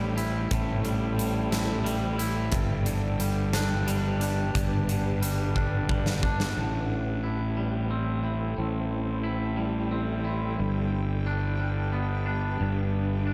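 A slow 6/8 pulse at 60 BPM, counted in dotted quarters with a straight feel, carries this melancholic, cathartic post-rock fragment in A dorian, cut from a longer piece. A huge arena drum kit with a punchy kick, medium-tuned snare and hi-hat sits up front from 0.2 s, closing with a fill from 5.5 s until it stops at 6.6 s. Throughout, a twangy, dark, compressed electric guitar plays clean fingered arpeggios through a diffuse ambient delay, while a fuzz-overdriven fingered bass stays low and round underneath. In the background, a granular cloud pad holds blurred, detuned sustained chords with slow attacks, lush chorus and its own reverb. The harmony moves between Am7 and G twice, and the whole dreamy mix is soaked in a huge ambient reverb.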